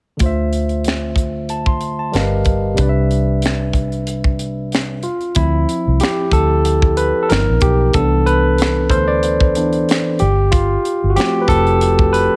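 A barky, bright tine electric piano sits up front through a combo amp, carrying the chords before taking a solo from 5.4 seconds in this late-night, soulful neo-soul and R&B excerpt, supported by a dark, round, foam-muted vintage fingered electric bass and a tight funk drum kit with finger snaps, hi-hat, a tight kick and a high-tuned snare, all set in a small room over a lightly swung groove moving through Dm9, G7alt and Cmaj9.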